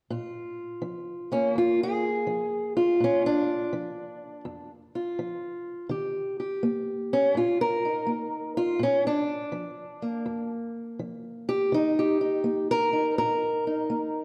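A fingerpicked acoustic archtop guitar with dark, woody old strings sits up front, playing alone from 0.1 to 14.2 s in this rollicking, gritty acoustic country blues fragment at 83 BPM in 4/4 with a swung eighth-note feel, moving between Bb and Eb in Bb major while a wet concert hall reverb adds a long, churchlike tail.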